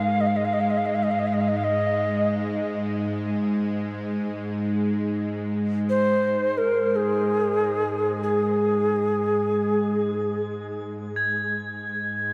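A Native American-style cedar flute, a bowed-like drone and crotales sound together from the opening of this calm, spacious piece of free-time world meditation music, cut from a longer work. The woody, pure flute carries the melody up front with vibrato and a tongued chiff, bathed in shimmer reverb and delay until 10.4 s, while the tense, string-like sawtooth drone, with its slow attack and noise layer, sustains beneath through 12.3 s. Bell-like crotales struck with hard rubber mallets add a soft, shimmering texture at the start and return at 11.2 s, set in a dark production drenched in a huge ambient reverb.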